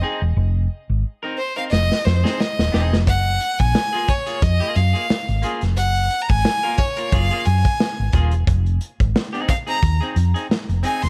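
A biting, airy violin carries the melody from the opening second, a single bowed player with intense vibrato sitting up front and trailed by tape echo in this cool, funky excerpt cut from a longer piece. Beneath it, a bright, clean semi-hollow electric guitar plays picked accompaniment through a lush chorus, while a round, punchy hollow-body short-scale bass, fingered and amped, holds down the low end and arrives at 0.2 seconds. A crunchy breakbeat kit with a saturated, gritty tone, a tight kick, a medium-tuned snare and hi-hat enters with a fill at 1.7 seconds, its dark, rolled-off top giving the small-room drums a smooth edge. The groove sits at 89 BPM in 4/4 with a light sixteenth-note swing, and the harmony moves from Fm7 to Gbmaj9 at 3.1 seconds before returning to Fm7. Studio reverb surrounds the mix, with the bass and drums pressed close and the violin cutting cleanly over the top.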